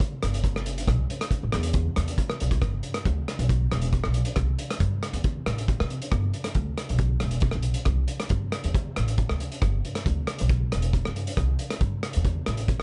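The recording sounds dry, with little reverb and a soft top end that tops out around 10.8 kHz. This short cut from a longer highlife guitar band piece is carefree and sunny, moving at a brisk 137 BPM in a straight 4/4 in G major, tuned slightly under standard pitch to A4 = 437 Hz. A vintage acoustic drum kit sits up front, its hi-hat, punchy kick and rim click heard in a small, pumping room with a warm, rolled-off top. An upright bass enters at 0.2 s and plays pizzicato on steel strings, ranging from E1 to C3 with a woody, warm tone. After a brief opening passage, the music moves into a new section at 2.6 s that carries through to the end at 12.8 s.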